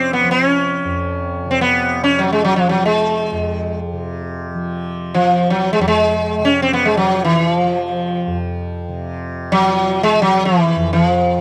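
A sitar and a tanpura sound together from the start of this 11.4-second fragment of Hindustani classical music in raga todi on F, unfolding in free time with a solemn, introspective mood. The sitar carries the melody up front, its round, buzzing plucked tone ringing with sympathetic strings between E3 and Db4. Beneath it, the softly plucked tanpura holds a shimmering drone from F2 to F3, all captured in a dry, close studio sound of the 1970s with light reverb.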